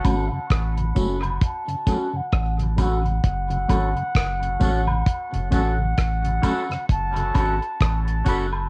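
A slow, swung dub reggae groove at 66 BPM in F# minor rests on a dry, tight-kicked 70s drum kit of hi-hat, kick and rim click, while a round, deep sub bass sits up front beneath a single F#m chord, giving this cut from a longer piece a hypnotic, spacious mood. A pure, straight-toned concert flute carries the melody through dub echo and plate reverb, over a clean, fingered electric guitar with chorus and echo and a mellow tonewheel organ turning in a slow rotary speaker, which drops out at 7.2 seconds. Distant tambourine and woodblock drift through their own echo, and a filter sweep runs across the whole passage, softened by the dull haze of a home cassette recording.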